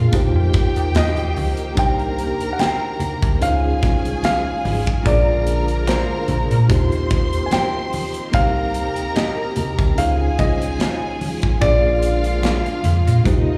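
A grand piano carries the melody from the start over a lush string section, a reedy electric piano with fast tremolo, a swirling phased string machine and a metallic, up-front FM bass. This is smooth 1970s-style soul at 73 BPM in Eb major with a light sixteenth-note swing, cycling through Eb6, Cm7, Dbmaj7 and Bb7. A punchy, polished drum kit and bright, hard-handed congas come in at 0.1 seconds, and a twangy, slightly broken-up electric guitar riff sits in the background from 0.9 seconds, all heard as a live gig through the venue's PA with recital hall reverb and slapback echo on several parts.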